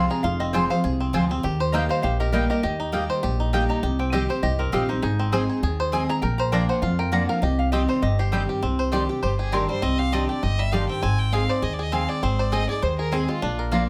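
A lap resonator guitar played with a steel bar opens with a metallic, nasal slide solo over brilliant, full-bodied picked acoustic guitar, twangy banjo arpeggios, woody mandolin stabs and a dark, up-front pizzicato upright bass in this rustic, lonesome swung bluegrass cut from a longer piece, before a rich, focused bowed fiddle with light vibrato takes the melody at 9.2 seconds, set in a small room's moderate reverb.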